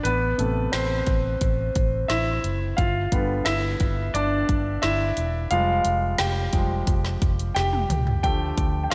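A lush hall reverb and a big arena sound frame this short, uplifting piece of piano-driven pop, cut from a longer piece, in a straight four-beat feel. A clear, polished baby grand piano sits up front and carries the lead for the whole passage, its slapback echo adding a present sheen as it moves across the Amadd9, G, Fmadd9 and Dm changes. Beneath it, a vintage fingered electric bass gives a dark, foam-muted, round tone with a punchy, amped edge. A deep house drum kit joins at 0.1 seconds with a deep kick, woody snare, dark hi-hats and toms, layered and produced to sound electronic. A drum fill from 7.6 to 8.2 seconds marks the approach to the final chord, keeping the hopeful mood lifting.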